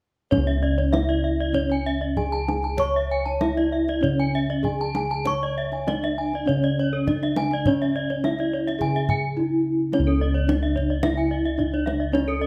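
Shimmering and hypnotic, this short cut from a longer Balinese gamelan piece sets a mellow, padded-mallet bronze metallophone melody over round, beating bossed gongs in the bass, with softly handled kendang and two airy, horn-struck metallophones spinning bright arpeggios whose paired tuning pulses, all caught by close, detailed microphones in a moderate recital-hall reverb before a brief new section arrives at 9.9 seconds.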